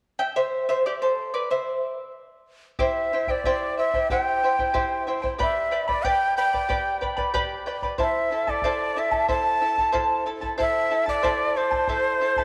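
A fingerpicked charango with shimmering double strings opens alone before a breathy, bright quena carries the wistful melody over it at 2.8 seconds, touched by tape echo and vibrato, while a deep, dry bombo keeps the 2/4 pulse at 92 BPM in this earthy Andean folk excerpt, set in a wet echo chamber as the chords move from C to G to Am.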